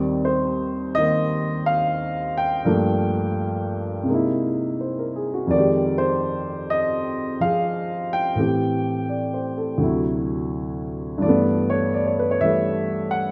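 Relaxed and warm, this solo jazz piece, cut from a longer work, swings gently in 4/4 on a lone grand piano with a dark, mellow tone and long sustain, placed up front across a range from D2 to G5. The harmony drifts from Eb6 through Gm9, C7alt and Fm9, then moves via Am7 and D9 to settle on G69 near 11.2 seconds. A moderate plate reverb adds a soft halo, while the rough home-demo mix keeps the sound natural.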